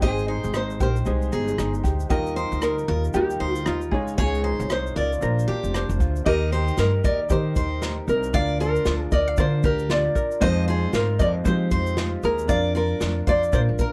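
A small, fingerpicked nylon-string guitar carries the melody, its finger squeaks audible over a sunny, heartfelt acoustic pop groove in Eb major at 116 BPM with a lightly swung sixteenth feel. An up-front, thumpy upright bass with gut strings anchors chords like Abmaj7, Ebadd9 and Fm7, while a bright jumbo steel-string guitar picks arpeggios, a light ukulele adds fingerpicked accompaniment, and a worn, slightly detuned upright piano sits boxy and woody in the background. A distant, roomy drum kit played with bundle sticks mixes tight kick, rim click, shaker, snare and crash in a dry mix, and the section shifts at 6.3 seconds in this cut from a longer piece.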